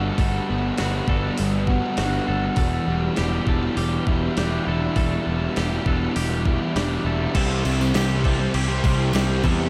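This dreamy, blissful shoegaze and dream pop rock excerpt opens with a thick wall of guitars and bass, all soaked in a huge ambient reverb. An up-front raw garage guitar plays an overdriven riff with reverse reverb, beside a dark, distorted fuzz guitar riff that carries analog chorus. In the background, a bright, twangy clean guitar picks arpeggios through lush chorus and analog delay. A punchy, overdriven fuzz bass sits up front, and a thumpy, tape-tinged 80s drum machine enters at 0.2 seconds with kick, snare, hi-hat and crash, its snare splashed with gated reverb. The harmony moves from Gmaj7 to Em7, then settles on C6 at 7.4 seconds, where a double-tracked, crunchy overdriven guitar riff joins in the background; a moment later, at 7.7 seconds, a jingly tambourine adds a light, live-room shimmer.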